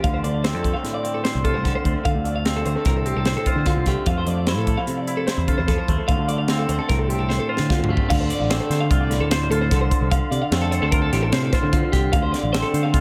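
Intricate and wistful, this math rock and midwest emo excerpt moves at 149 BPM in 5/4 and D minor, with a twangy, clean electric guitar and a bright, twangy twelve-string electric guitar spinning arpeggios through analog delay over a growly picked electric bass and a crisp, airy fusion drum kit with a high-tuned snare and punchy kick, shifting from Dm7 to Fmaj7 and back before a drum fill at 7.3 seconds leads into a new section at 8.1 seconds, all set in an echo-heavy mix with light reverb.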